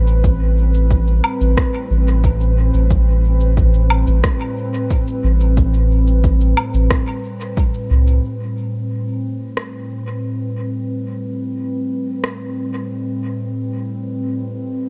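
A warbling, detuned pad of sawtooth and triangle tones sits up front throughout this ambient dub excerpt, holding sustained chords on an Am9 with a slow attack, long release, chorus and its own built-in reverb that give it a nostalgic, lo-fi, vintage cast. Beneath it, a soft, round sub bass built from triangle and square waves carries a deep, fast-attacking low end until it drops out at 8.2 seconds. A punchy, layered electronic kick, re-recorded in a small room, plays within the straight feel until 7.7 seconds. Electronic cabasa, woodblock and rim click scatter through a dub echo until 12.4 seconds, after which the pad carries on alone. The production is dark and close, with little reverb beyond the pad's own, leaving a spacious, deep mood.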